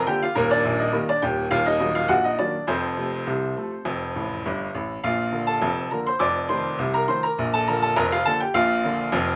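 Ragtime piano in a cheerful, playful mood at 103 BPM in 2/4 and Bb major, tuned to A4 = 439 Hz, with a solo bright upright piano, brilliant and woody and sitting up front in a moderate club reverb, moving from Eb to Ebm and F before a fill at 4.2 seconds leads into a new section at 5.0 seconds that turns through Bb and F7 back to Bb, in this short passage cut from a longer piece.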